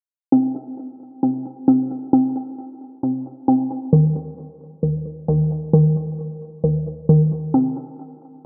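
A light reverb and digital ambience frame this short, low-pass filtered fragment of dark, melancholic hip hop in C minor, moving at 133 BPM in 4/4 with a half-time feel. A single hollow square pluck carries everything, playing arpeggios from 0.3 to 8.4 seconds between Eb3 and C4. Its bouncy, detuned square-wave tone has a noise layer and a sub octave beneath it, with a fast attack and a decaying filter pluck on each note. Chorus and tape echo thicken the synth, which sits up front in the mix. A filter sweep runs through the passage from 0.3 to 8.5 seconds, adding a sense of motion to the brooding atmosphere.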